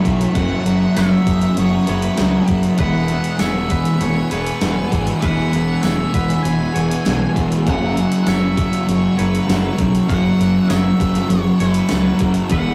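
A straight 4/4 pulse comes from a clean 12-bit drum machine with a thumpy kick, medium-tuned snare and hi-hat, overdriven and re-recorded in a large room, joined by a growling fingered bass that is amped and overdriven. This is a wistful, hazy slice of shoegaze and dream pop rock, cut from a longer piece and moving through F#7(no3), Eadd9 and F#7sus4. A thick, dark fuzz guitar riff sits up front in the low register, while an overdriven semi-hollow guitar plays its own riff further back and a clean, compressed, twangy guitar picks arpeggios in the background. An octave-fuzz lead guitar carries the melody from 0.3 seconds, and an icy, crystalline glass pad holds sustained chords high above with chorus and its own reverb. A jingly tambourine enters at 1.0 seconds, and the whole take has the rough feel of a rehearsal room, with a small, wet reverb and tube saturation.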